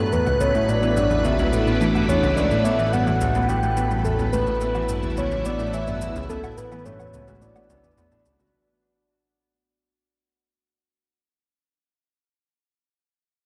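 Drenched in a 2.5-second echo-chamber reverb, this cosmic, expansive fragment of ambient, sequencer-driven space music at 107 BPM in 4/4 rests on an A7sus4 chord and begins fading at 2.6 seconds. A soft, octave-layered synth lead with a dark, round tone, vibrato, chorus and tape echo carries the melody over the swirling, phaser-washed chords of a vintage string machine, while a detuned analog pluck riff with chorus and tape echo sits in the background. A warbling, evolving analog drone enters on a low A at 0.6 seconds beneath a bubbling, resonant stepped-filter texture, overdriven electronic shaker and woodblock, and a ringing, fingerpicked Celtic harp whose arpeggios linger until 11.1 seconds.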